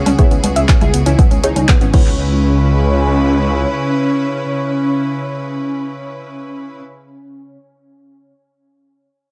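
A steady, straight pulse drives this dramatic, driving melodic techno excerpt, with a deep, tape-warm electronic kick sitting up front beside a dry, overdriven analog drum machine of congas, handclaps, hi-hat, woodblock and crash cymbal. Both drum parts drop out at 2.0 seconds. A menacing detuned saw bass with a filter swell pumps under sidechain compression and carries on until 3.6 seconds. Over it, a thick, bold unison lead with vibrato carries the melody through delay and chorus, while a rich chamber string section holds bowed, earthy chords. A woody, nasal wave-folded pluck spins dark arpeggios through lush chorus and delay until 2.4 seconds, and a muted, phased dub chord stab sits in the background. The harmony moves from E6/C# to C#m7, and the mix is echo-heavy, with light reverb and a loud, pumping sidechain feel.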